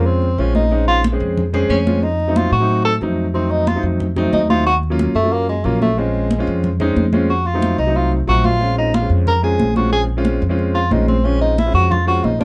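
A driving 4/4 pulse at 182 BPM with a straight feel anchors this sultry Afro-Cuban jazz excerpt in Bb minor, cut from a longer piece and cycling through Bbm7, F7b9 and Ebm7 chords. A tenor saxophone carries the melody as a soloist for the full 12.4 seconds, its subtone voice warm and scooped, sitting up front yet sounding distant and roomy. Beside it, a grand piano supplies intimate accompaniment with natural, long-sustaining chords and audible action noise. A pizzicato upright bass, woody and strung with steel, holds the low end up front, while high-tuned congas enter at 0.1 seconds with hard hands, their bright, thin skins compressed and saturated in the background. A moderate small-room reverb and a dark, warm production round out the sound.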